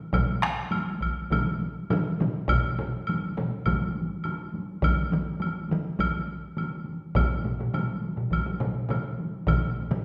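Solo taiko drums struck with heavy sticks, three taiko ensemble parts and a woody woodblock all enter together at the start of this driving, ceremonial Japanese traditional excerpt in a straight 4/4. One ensemble part, also played with heavy sticks, sounds distant in a large room. The other two use hard sticks, one carrying a small-room ambience and the other close and dry. The recording sits in a wet recital-hall reverb, with the solo drums ending at 9.6 seconds alongside the woodblock while the ensemble drums carry on to the cut at 10.0 seconds.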